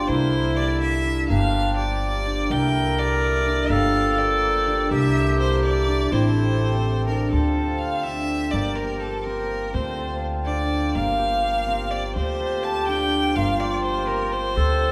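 Pulsing in 5/8 at 249 eighth notes per minute with a straight feel, this urgent, restless contemporary chamber piece is cut from a longer work. A clear, smooth bowed violin with vibrato carries the melody over a warm, soft-attacked classical clarinet second line, which drops out at 7.1 s and returns at 12.2 s. A ringing, thumb-plucked concert harp plays arpeggios, a reedy, breathing pedal harmonium holds sustained chords, and an up-front, woody, growly pizzicato upright bass anchors the low end, as the harmony alternates between C9 and Gm7 before shifting to Dm7 and Gm7 in a moderate recital hall reverb.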